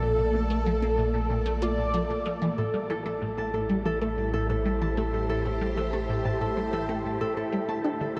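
A steady, straight 4/4 pulse at 94 BPM drives this hypnotic, mysterious stretch of sequencer-driven ambient space music in A phrygian, cut from a longer piece and bathed in a huge, wet reverb with a long 8.5-second tail. A squelchy, resonant blip pluck carries the riff throughout, its detuned pulse and sawtooth tones shaped by a moving notch, colored by phaser and trailed by delay, while a fat, thick analog bass sits up front underneath. A swirling, vintage string machine holds sustained chords through ensemble chorus and phaser, moving from Bbmaj7 to Am7 and on to Dsus2 at 7.7 seconds, and a breathy, wind-like tuned noise texture lingers dark in the background. A shimmering pulse-width lead with vibrato sings a brief melody that stops at 2.6 seconds, the moment an acoustic Celtic harp enters up front with fingerpicked, ringing arpeggios spread through delay and shimmer reverb.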